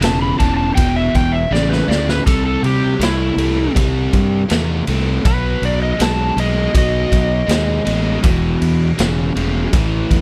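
A dry, up-front recording of a brooding, heavy blues rock and southern rock power trio, cut from a longer piece, moving at a straight 80 BPM in E minor. A biting, double-tracked overdriven guitar picks a low riff over a growly, punchy fuzz bass and a raw, saturated garage drum kit with a punchy kick, medium-tuned snare, ride and splash, heard in a bright, pumping stone room with a rolled-off top. A fingered overdriven slide guitar carries the melody until 8.2 s, a drum fill lands at 1.5 s, and the chords move from E7(no3) through C and B to an E5 at the close.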